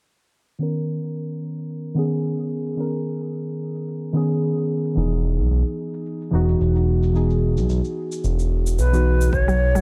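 A lightly swung 16th-note groove carries this earthy, organic downtempo excerpt, where dark, muted felt-like synth keys with chorus, delay, sidechain pumping and a filter sweep move over a Bmaj9 to Emaj7 change alongside an overdriven cabasa; a smooth, gliding synth bass with portamento joins up front at 5.0 seconds, and in the closing moments a breathy, distant ney, a deep overdriven electronic kick in the background, a very quiet ringing bronze singing bowl and a woody, mallet-like synth pluck appear under light reverb.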